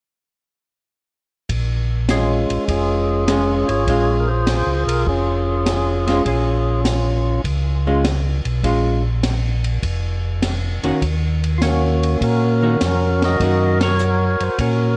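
A mellow, round tonewheel organ bass with chorus vibrato and an open acoustic jazz kit, with dark cymbals, a high-tuned snare, a boomy kick and a gritty vintage-sampler edge, start this soulful, bluesy soul jazz organ trio cut at 1.5 seconds, swinging at 101 BPM in Bb minor over a Bbm7 chord. A fat, percussive second organ takes the melody through a slow rotary speaker and analog delay, and a clean, picked hollow-body electric guitar adds dark accompaniment. The harmony moves to Ebm7 at 11.0 seconds and the band hits an accent at 13.7, all heard through light small-room reverb and cassette tape.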